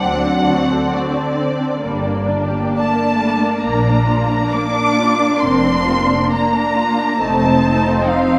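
Classical slow romantic movement for string orchestra, tender and serene in a rubato 4/4, cut from a longer piece, where a close, lush muted violin section sings the melody up front over a second muted violin line, veiled violas, lightly vibrant cellos and soft-attack double basses that drop out at 7.9 s, all con sordino and dark-toned, moving through D7, Gm, Bb and F7 in a moderate concert hall reverb.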